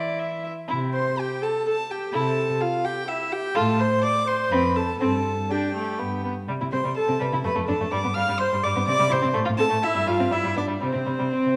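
Set in 3/4 at 124 BPM, the beats fall unevenly with a flexible rubato that gives this quick classical-period movement for string quartet a graceful, spirited lift. All four players bow gut strings in period style, lending the group a reedy edge. The first violin carries the melody up front with a dark tone, reaching from C5 to F6, while the second violin sits farther back with a nasal colour on its supporting line. The warm viola fills in the accompaniment close at hand, and the cello anchors the bass with a dark, smooth-topped sound until 11.5 seconds. In C major, the harmony moves from C through F and a suspended G before sparer, rootless and open chords bring it home to C around 10.8 seconds. A generous recital-hall reverb surrounds the quartet, and the passage is cut from a longer piece.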